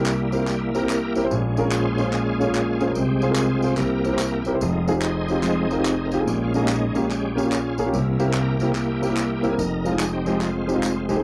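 Solemn and fervent, this swung uptempo gospel fragment in F minor at 145 BPM features a bright, shouting tonewheel organ soloing from the start, its sustained chords colored by slow rotary speaker and chorus vibrato, over an intimate concert grand piano with deep bass, long sustain and audible action noise, while group handclaps and tambourine from a small room join at 0.1 seconds and the harmony cycles through C7, Bbm7 and Fm7 in a dry, close 1970s-style studio sound with light reverb.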